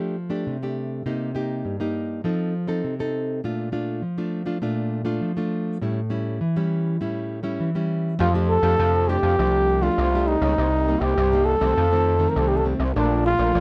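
A straight 4/4 samba and choro groove, playful and joyful, opens on fingerpicked classical nylon-string guitar alone, and at 8.2 seconds a dark, breathy, intimate trumpet enters with a whispered, vibrato-tinged jazz solo over a gritty, saturated sawtooth synth bass, all close-miked with light reverb in this fragment of a longer piece.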